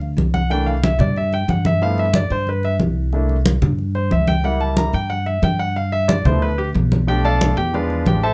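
A clear concert grand piano takes the solo in this lively, sophisticated Afro-Cuban jazz excerpt, its intimate, polished tone carrying audible action noise, deep bass and long sustain over C13, G13 and C#dim7 harmony in G mixolydian at 182 BPM. A growly, woody pizzicato upright bass sits up front beside it, while low-tuned congas with a thick skin and soft hands add a small-room warmth. A moderate club reverb gives the short passage its setting.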